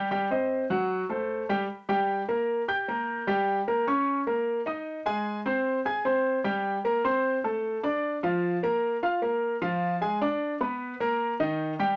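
Jazz for solo grand piano, sophisticated and driving, in a straight-feel 4/4 cut from a longer piece. The clear, intimate piano sits up front with audible action noise and a natural sound in light reverb, ranging from Eb3 up to Ab6. Its harmony moves through colours such as Eb7, Amadd11 and Bmmaj7 after a short opening phrase gives way to a longer passage at 1.7 seconds.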